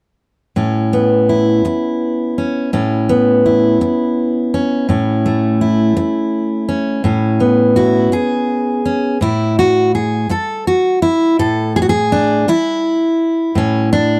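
A fingerpicked steel-string acoustic guitar opens at 0.6 seconds on an Aadd9 chord, playing alone in a peaceful, hopeful folk piece in A major. The tempo sits around 55 BPM in 6/8, though the feel is rubato and moves freely with the player. The jumbo-bodied instrument sounds bright and full, sitting up front in a dry, close recording with small room ambience and a 1970s studio character, and finger squeaks are audible along the strings. The harmony moves from Aadd9 to A and C#m7/A before settling on an A5 at 9.2 seconds, ranging from A2 up to A4. The guitar stops at 14.2 seconds, as this is a short cut from a longer piece.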